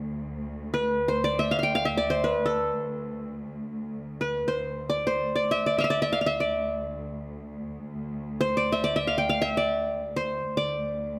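Turkish makam ensemble music with a melancholic, longing mood, heard as a short fragment cut from a longer piece. A bright-edged qanun, played with fingerpicks so its triple strings ring out, sits up front and carries the melody throughout its 11.2 seconds. Beneath it, a bowed cello section holds a smooth, low drone with light vibrato, all in a lightly reverberant room captured by close, detailed microphones.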